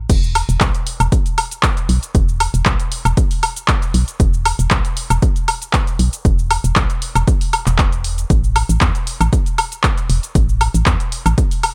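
A dark, hollow FM bass with an organ-like tone opens this deep, smooth slice of deep house, its fast-attack, decaying notes pumping against the sidechain as a drop arrives at 0.1 s. A punchy, overdriven electronic kick sits up front alongside a layered kit of crash cymbal, handclaps, hi-hat, shaker and woodblock, which carries its own overdrive. The mix is dry, with the bass and kick slightly louder than the rest of the kit, and this excerpt is cut from a longer piece.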